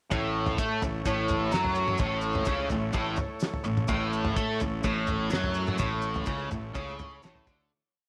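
A light studio reverb surrounds this short, complete psychedelic rock piece, and its hazy, kaleidoscopic mood runs at 127 BPM in a straight 4/4, rooted on an A chord in A major. Up front, a bright, overdriven electric guitar picks a double-tracked single-note riff through a flanger, while a dark, round fuzz bass drives steady eighth notes and doubles that riff underneath. A cloth-damped acoustic drum kit in a small room thuds along with a fat snare, tight kick and grooving toms, its top end rolled off. A vintage combo organ holds buzzy, very quiet sustained chords with a light vibrato, and grainy, mellow maracas shake in the background. The groove plays from the first moment until a fade-out that begins at 5.8 seconds and finishes at 7.7 seconds.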